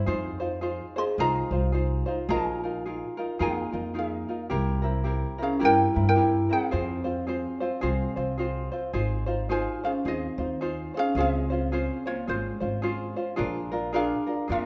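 Hawaiian music with a relaxed, languid swing, cut from a longer piece, opens on fingerpicked tenor ukulele chords and a growly, thumpy pizzicato upright bass with steel strings, both up front in a moderate recital hall reverb. At 1.0 s a mellow, light fingerpicked ukulele takes the melody, joined by a ringing, metallic vibraphone second line played with medium mallets and the motor off, its tone warm with a boxy small-room sound. Around 8.9 s the harmony shifts from minor chords into a brighter major passage.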